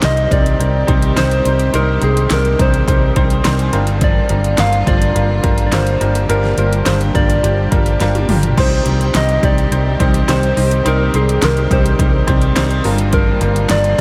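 A dreamy, reverb-soaked mix surrounds this hopeful, warm slice of piano-driven pop at 105 BPM, cut from a longer piece and moving between Cm and Gm7. A bright, woody upright piano with a slightly detuned edge and long sustain carries the accompaniment, adding a fill at 3.2 seconds. Above it, a soft, round synth lead with a vintage FM warble, chorus and tape echo sings the melody with a gentle, keys-like tone and a fast attack. A rich bowed string section holds smooth, even chords in the background. Underneath, a dark, foam-muted electric bass sits up front beside an overdriven deep house kit with a punchy kick, fat snare, metallic hats and handclaps, which drops in a drum fill at 8.0 seconds.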